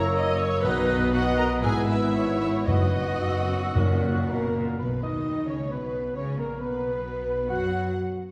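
Classical orchestral music, graceful and lively, moves with a rubato feel at roughly 111-136 BPM in B major, in a short passage cut from a longer piece. A violin section carries the melody with smooth, even vibrato, while a second, richer violin section sits in the background among the second lines of an airy, distant flute ensemble, a mellow, roomy clarinet and a cor anglais with light vibrato. Beneath them, an intense viola section and a mellow bassoon fill the accompaniment, though the bassoon drops out at 4.5 seconds. A clear cello section and a soft-attacked, distant double bass section anchor the bass, and a dark French horn section enters at 0.6 seconds with sustained chords. Timpani, struck with soft mallets for a round tone, join at the same moment and fall silent at 5.4 seconds. The whole orchestra is heard from further back in a concert hall, bathed in wet reverberation.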